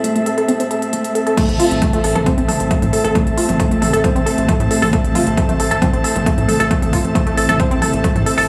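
Driving, relentless peak-time techno, cut from a longer piece, opens with a filter sweep on a tight, detuned sawtooth synth riff over an eerie, warbling FM drone set in the background and an airy, breathy pad, with a techno kit of smooth hats, crash and toms, before the drop at 1.4 seconds brings in an up-front punchy kick and a saturated, plucky sequencer bass, every part but the kick pumping against it in a small, lightly reverberant room.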